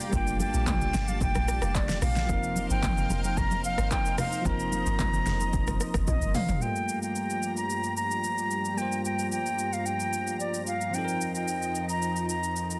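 Amapiano with a deep, soulful mood, this excerpt sets a pure, up-front concert flute melody with delay over bell-like tine electric piano chords, a lush, detuned unison pad with chorus and sidechain pumping, and a punchy, overdriven deep house drum kit, while a round, dark log drum bass and soft-handed, ringing congas in the background drop away around 6.6 seconds after a drum fill from 6.1 seconds, the whole set in a dry, dense, heavily limited master.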